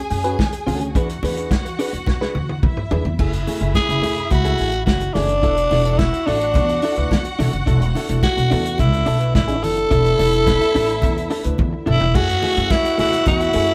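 Disco with a danceable, glamorous feel, where lush bowed strings with portamento, a bright, compressed clean electric guitar, a woody pizzicato upright bass, a soul drum kit with dark cymbals and fills, and very quiet low-tuned congas share a small live room before a raspy, growling tenor saxophone takes the melody up front at 3.8 s and a distant French horn section adds sustained chords from 7.7 s.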